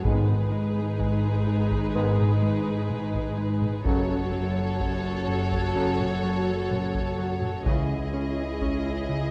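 Cinematic suspense film score, mysterious and tense, in which soft, sul tasto violin sections carry a floating melody and a second line over lush, woody violas, distant cellos and close double basses, while an ethereal glass harmonica, mellow French horns and very quiet, bright trombones hold sustained chords, a fat, detuned analog bass riff with a filter sweep sits in the background, heavy-stick taiko drums sound close and dry, very quiet timpani sound only until 1.4 s, and a delicate, tinkling music box stops at 4.8 s, set in a moderate concert hall reverb with a dark, warm production.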